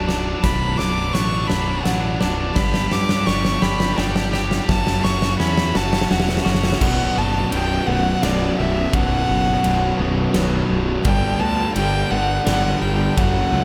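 In a straight 3/4 at 85 BPM, this brooding, cinematic post-rock excerpt in B minor opens with a build-up and drum fill from a huge arena kit with a fat snare, punchy kick and bright cymbals. Over Bm, Gadd9 and F#m7 chords, a dark, intimate violin carries the melody with light vibrato and an airy sul tasto bow, touched by slapback echo and digital delay. Beneath it sit a reedy, breathing harmonium, clean picked guitar arpeggios, a tight distorted guitar riff and a round, fuzzy fingered bass, and at 6.8 seconds an overdriven semi-hollow guitar joins in the background, all inside a lush hall reverb with a big arena sound.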